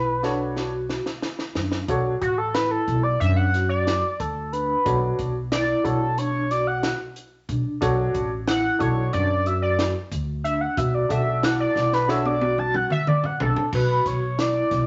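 Progressive instrumental in 9/8, driving and intricate, where an edgy, tearing sawtooth sync lead with chorus and vibrato takes a bright solo from 1.9 to 13.7 seconds over mellow soft-mallet vibraphone arpeggios, a woody, growly pizzicato upright bass, a worn baby grand piano with long sustain, and a compact cocktail drum kit with a high-tuned snare and punchy kick that plays fills at the opening and again from 11.8 seconds, the whole mix sitting in a wet studio reverb with a faint mains hum.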